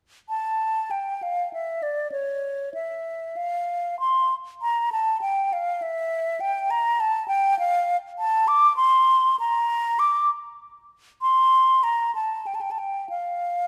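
A mellow, hollow silver concert flute carries this baroque-style classical fantasia entirely on its own, playing from 0.3 s to 13.7 s. Its airy, metallic tone sits up front, colored by vibrato and clearly tongued notes as the line moves between C#5 and D6. The pace hovers around 98 BPM in 3/4, though the rubato feel lets the phrasing breathe freely, giving the passage an introspective, flowing mood. The harmony settles into F major from 7.6 s, with the instrument tuned to A4 = 441 Hz. A moderate scoring-stage reverb with a 1.5-second decay surrounds the flute, and the passage is cut from a longer piece.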